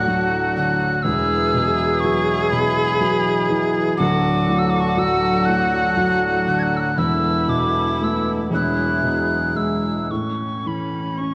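A loose, rubato 6/8 pulse drifts along at roughly 36-41 beats per minute in dotted quarters, giving this short Celtic slow air, cut from a longer piece, a nostalgic and tender feel. A hollow wooden whistle carries the melody, airy and soft-edged with gentle vibrato and a tape echo trailing behind it, while a single bowed cello sings a smooth, rich second line beneath. A felt-muted upright piano supplies mellow, intimate accompaniment with the noise of its action audible up close, and an accordion holds reedy, sweet sustained chords with a light tremolo tuning until it stops at 10.1 s. The harmony moves from D through Esus2, back to D, then Esus4 and Eadd9 before settling on A as a new section opens at 10.1 s. A moderate recital hall reverb surrounds the ensemble, and the recording carries the worn, warbling pitch drift of old cassette tape.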